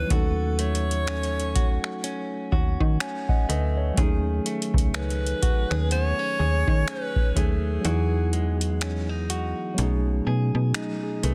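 A booming analog drum machine sets a slow 62 BPM swung groove of deep kick, metallic hi-hat and finger snaps, with the kick dropping out at 7.8 s, while a snappy FM bass with a metallic, slap-like attack sits up front. Over this longing, sensual contemporary R&B passage, a close-miked alto saxophone sings a mellow, breathy subtone melody with vibrato and tape echo until 8.8 s. A tine electric piano and a direct-recorded, compressed clean electric guitar playing picked arpeggios fill in chords moving from D#m7b5 through B13 to Emaj9, all in a dense, heavily limited modern mix with digital ambience.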